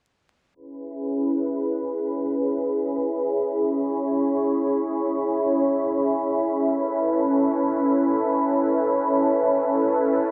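A lush, detuned unison pad opens this nostalgic, atmospheric drum and bass excerpt in free time, its thick, bright sawtooth-and-square chords swelling in slowly up front with chorus and phaser from C#m7 to B9sus4 at 6.6 seconds, while an airy, breathy wind-like noise layer drifts in at 1.4 seconds in the background with its own reverb, all under a filter sweep and a gritty, crackling vinyl-tinged hardware sound in a moderate echo chamber.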